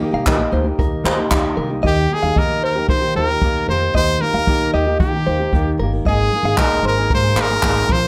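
Easy-going and sunny, this piece of acoustic pop moves at 114 BPM in a straight 4/4, settled in Eb major. A full-bodied nylon-string guitar, thumb-plucked with an audible finger squeak, and a woody, thumpy pizzicato upright bass carry the accompaniment, while a jazz brush drum kit adds brushes, handclaps and a boomy kick from 0.3 seconds. A bright, compressed clean electric guitar, picked and recorded direct, spins arpeggios up high, and a slightly detuned vintage upright piano sits in the background only until 1.9 seconds. At that point a brilliant, punchy trumpet takes the solo melody up front, forceful and pop-styled with vibrato, its plate reverb lending it shine. The harmony rests on Eb before shifting to Absus2 at 6.0 seconds, with a moderate studio reverb framing the ensemble.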